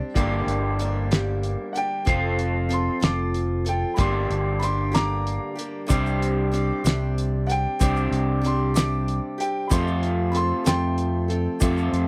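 A dark, mellow concert grand piano carries the melody from the opening moment over a boxy, picked acoustic archtop and a twangy, slightly broken-up electric guitar riff bathed in spring reverb, setting a dusty, wistful folk rock and heartland rock mood in G minor at a slow 63 BPM in 6/8. A round, amped fingered bass and a cloth-damped, thuddy drum kit with a fat snare, tight kick and rolled-off top enter at 0.2 seconds, and a grainy tube shaker sits in the background from 5.9 seconds as the chords move through Gm, F and Csus2. The dry, close 1970s-style studio sound keeps the drums, bass and electric guitar up front in this excerpt from a longer piece.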